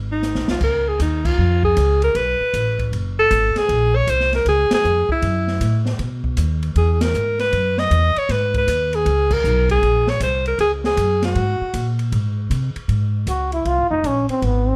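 A lightly reverberant, warm production frames this playful, swinging small-group jazz excerpt at 156 BPM, where a woody pizzicato upright bass and an open acoustic drum kit with dark cymbals and a boomy kick support a clear alto saxophone that carries the melody with light vibrato and plate reverb until 12.0 seconds, with band accents along the way, before a bright, vintage-toned trombone takes a short solo from 13.3 seconds.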